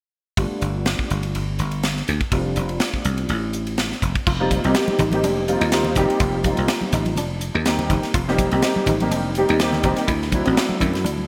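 A growly, punchy thumbed slap bass drives this bright, slick excerpt of 1980s-style electric jazz fusion, with a crisp drum kit carrying gated reverb, a dark, mellow concert grand with audible action noise and ensemble chorus, and, from 4.3 s, twangy chorused clean electric guitar stabs in the background, joined at 4.5 s by very quiet damped congas, all set in a lush hall.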